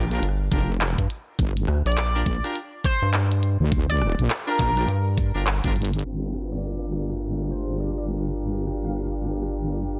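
The recording sounds dry and muffled under a low-pass filter, framing a gritty, swaggering glitch hop passage cut from a longer piece, set at 103 BPM in 4/4 with a swung sixteenth-note feel in G minor pentatonic over a Gm7 chord. A clear horn section plays stabs coated in vintage 12-bit sampler grit, with sidechain pumping and digital delay, while a heavy, detuned wobble bass with tube saturation and chorus sits up front beside a rubbery, nasal square-wave bass. A glitchy kit of clicky hats, handclaps and rim clicks, tape-toned and filtered, pairs with an overdriven, knocking electronic kick. Soon an edgy sync lead arrives with a tearing bite, lush chorus, vibrato and delay. The square bass and kick stop at about 5.7 seconds, and a drum fill leads into a second section at 6.0 seconds, where a filter sweep runs alongside a very quiet downlifter. An ethereal, airy pad with ensemble chorus, its own reverb and sidechain pumping drifts in behind at 7.6 seconds.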